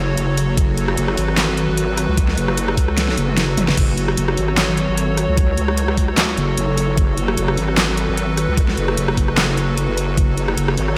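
A resonant, wobbling bass sits up front throughout this heavy, aggressive dubstep excerpt, its detuned unison tone saturated with overdrive and thickened with chorus. Beneath and around it, an evolving wavetable pad holds sustained chords on a single minor harmony, its morphing, warbling timbre bright and vintage-tinged, with a slow attack, long release and sidechain pumping. A layered electronic drum kit with a huge snare, handclaps, hi-hat, rim click, toms and crash cymbal drives a swung half-time feel, overdriven and placed in a small room, with a drum fill between 3.0 and 3.8 seconds. A knocking, overdriven electronic kick joins at 0.6 seconds and sits up front. The whole mix is soaked in a lush hall reverb, giving the aggression a dreamy haze.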